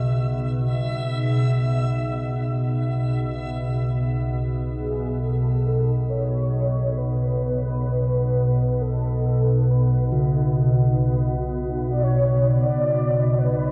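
An up-front, nasal organ-like drone holds the low register from B1 to B2 throughout this unsettling, cavernous dark ambient passage in free time, its chorus and built-in reverb giving it a calm, sustained body. A bright, reversed granular texture hovers on E5 until 3.4 s, while a metallic bronze singing bowl, struck with a wooden striker, rings delayed arpeggios in the background at the opening and again from 10.1 s. From 4.8 s a mellow, horn-like synth lead with warbling vibrato carries the melody through a huge, dark reverb-soaked space as the harmony moves from E to a rootless G#madd11 over B.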